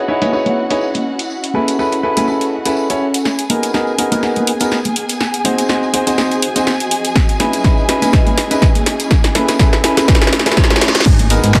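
A lightly swung 4/4 groove at 123 BPM drives this energetic, bittersweet piano house excerpt in G# phrygian, built on a punchy analog drum machine of handclaps, hi-hat, snare and crash with a tape-warm bite, while congas and tambourine with soft hands sit vintage and band-limited in the background. A clear, intimate grand piano plays the riff up front, its action noise audible, treated with delay, a low-pass filter and sidechain pumping, over a lush bowed violin section holding sustained chords with vibrato and gritty 12-bit sampler colour, and an ethereal, airy pad of detuned sawtooth and triangle tones that stays very quiet. The harmony moves through C#m9, Amaj9, G#m9 and G#7, returns to C#m9 and Amaj9, then settles back on G#m9. From 3.3 s a long build-up unfolds with a drum fill and a filter sweep on the piano. A background riser enters at 5.0 s, a punchy electronic kick drum lands at 7.2 s, and a reverse cymbal follows at 10.1 s. 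At 11.1 s an impact hits as a round, dark FM bass with fast attack and a faint brushed drum kit on hi-hat and snare join briefly, all set in a moderate hall reverb.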